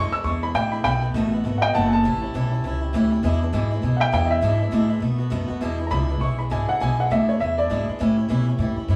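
Rockabilly at a brisk 201 BPM in 4/4, with swing on the eighth notes and an upbeat, rowdy mood, set in E mixolydian. The upright piano carries the melody and takes a solo through the first 5.6 seconds; its sound is woody, up front and full of long sustain, and it drops out at 8.0 seconds. Beneath it, the pizzicato upright bass sits prominently in the mix with a thumpy, gut-string tone. The picked acoustic guitar supplies swing-style accompaniment, bright and boxy with fresh strings and audible finger squeak. The harmony moves through E7, B7 and A7 dominant chords, and the band plays live together in a small room bathed in a wet studio reverb, in a passage cut from a longer piece.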